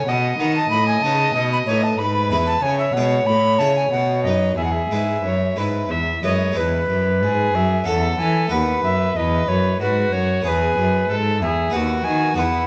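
A classical, baroque-style sonata movement with continuo, this short excerpt cut from a longer piece moves at 93 BPM in a straight 3/4 in E major, tuned to A4 = 441 Hz, with a radiant, dance-like mood. A tenor recorder carries the melody between B4 and B5 with an airy, wooden straight tone, its tongued notes marked by a distinct chiff. Beneath it a single dark violin plays the second line from E4 to E5, its gut strings giving a nasal, reedy period sound. A Flemish-style harpsichord with three sets of strings supplies plucked accompaniment, brilliant and full, sitting lower in the balance than the other parts. A rich gut-strung cello holds the bass from D#2 to E3, close and up front. The first section gives way to a second at 6.6 seconds over harmonies moving through chords such as C#m, Amaj9 and F#m7/E, all heard through close, detailed microphones in a recital hall with moderate reverb.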